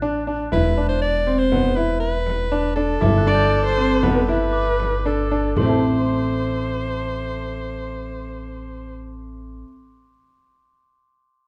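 Contemporary chamber music in 5/4 at 118 BPM in A dorian, hypnotic yet urgent, where clear grand piano arpeggios and a woody pizzicato upright bass run throughout under a bell-like glockenspiel in the background, a close-miked soprano saxophone with vibrato, subtone and scooped notes carries a jazz-style melody over a deep, distant frame drum, a focused, boxy bowed viola takes a second line from 3.3 s, and the tempo slows from 1.5 s until 5.6 s, all set in a moderate recital hall reverb with a dark, warm production in this fragment of a longer piece.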